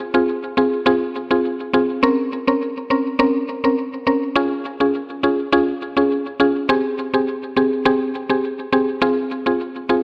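A woody, round mallet-like synth pluck plays alone from 0.0 to 10.0 seconds, its percussive, nasal FM tone sitting up front with chorus and delay in this hypnotic, sultry dancehall excerpt at 103 BPM in F minor. The chords move from Fm through Bbmadd9, Db and Abmaj7 before returning to Fm at 9.0 seconds, where a short new section begins. A lush hall reverb and a dark production surround the pluck's bright, fast-decaying notes.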